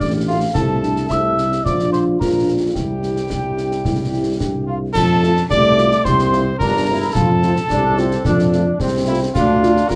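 A punchy cornet with light vibrato carries the melody in this festive, rousing military-style march for wind band at 109 BPM in 2/4 and F major, over a mellow, roomy tuba bass, a pure, hollow piccolo second line, a dark, close-miked euphonium that drops out at 4.9 s, a tight, smooth-topped French horn section in the background, a brilliant-toned trombone section holding chords from 5.5 s, and concert snare drum, bass drum and clash cymbals, heard from further back through a moderate plate reverb in a passage cut from a longer piece.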